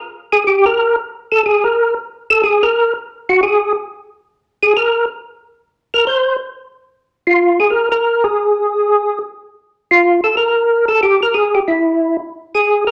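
Smoky, bluesy swing jazz in this excerpt features a lone percussive tonewheel organ, entering at 0.3 seconds and playing up front through to the cut at 12.9 seconds, its solo line staying within a compact middle register. The organ sounds fat and clean, with third-harmonic percussion and audible key click, colored by chorus vibrato and a slow rotary speaker. A moderate large-studio reverb gives the sound space as the phrase moves into a new section at 7.0 seconds.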